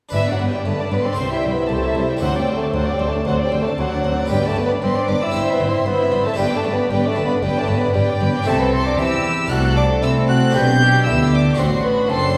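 A mellow solo bassoon carries the melody from the first moment, with a light vibrato, alongside a high violin section whose warm, gut-string period tone sits close, over a second violin line with a smooth top. This festive, lively baroque-style concerto movement in G major moves at a straight 115 BPM in 4/4. A distant, dark viola section, a background cello section and a double bass section fill out the accompaniment and bass, while a close-miked, dry, bright harpsichord plucks along in the background, all heard from further back in a recital hall with a reverb of 1.4 seconds, in a 12.4-second excerpt cut from a longer piece.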